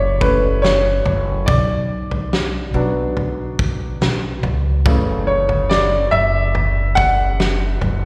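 Heard as a live gig through the venue's PA, this brief fragment of a heartfelt, emotional pop ballad carries recital hall reverb, light reverb and small room ambience. A clear, woody upright piano with short sustain and slapback echo takes the solo throughout, moving from F#m7 to Bm and back to F#m7 at 4.9 seconds. A thumpy pizzicato upright bass with steel-string brightness and a loose, gritty indie drum kit with a fat snare, punchy kick, toms and a rolled-off top keep a straight 4/4 pulse up front beneath it.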